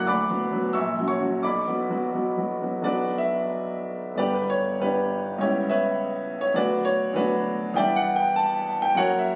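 Classical romantic character piece for solo piano in B minor, passionate and stormy, moving in a rubato 2/4 at roughly 82-104 BPM in this short fragment cut from a longer work. A warm, vintage concert grand sits up front with a deep, smooth bass, ranging from F#1 to F#6 through chords that shift from B minor colours toward G, C#m7b5 and Em7 after a change of section at 2.9 seconds. The phone capture places the instrument in a moderately reverberant room with a club-like ambience.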